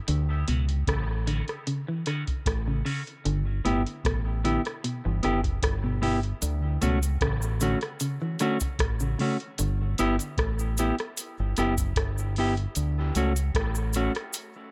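A round, up-front fingered electric bass anchors this spacious, hazy dub reggae passage, its tone deep, dark and amped. A soft vintage rhythm box keeps a straight pulse with a deep analog kick, metallic hi-hats and rim clicks. A mellow electric guitar plays clean, dark-toned, fingered accompaniment through a high-pass filter and dub echo. A semi-hollow electric guitar adds picked, hollow-body arpeggios soaked in dub echo until 9.8 seconds, while a close, dry cabasa joins at 6.4 seconds. The harmony sways between Dmaj7 and G6 under light reverb and digital ambience, in a passage cut from a longer piece.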